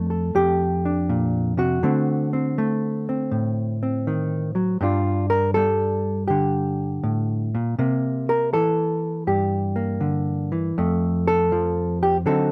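Close, detailed and nearly dry, this relaxed solo jazz excerpt features a dark, clean, fingered hollow-body electric guitar up front, swinging gently in 4/4 through rich chords from F69 and D7b9 to Gm7 and C13 before settling on F at 10.8 seconds.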